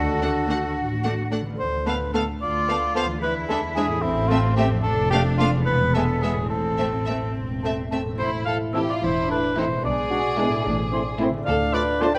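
Cinematic chamber-orchestra cue in 6/8 with a sneaky, quirky mood, where a mellow, up-front cor anglais and a rich, vibrato-laden violin melody sit over bright, ringing harp arpeggios, a close, expressive double bass section, clear cellos, a distant viola accompaniment, airy background flutes and a warm clarinet, before a roomy bassoon joins at 8.2 seconds and a dark, very quiet French horn section adds sustained chords from 8.5 seconds, all in a moderate scoring-stage reverb.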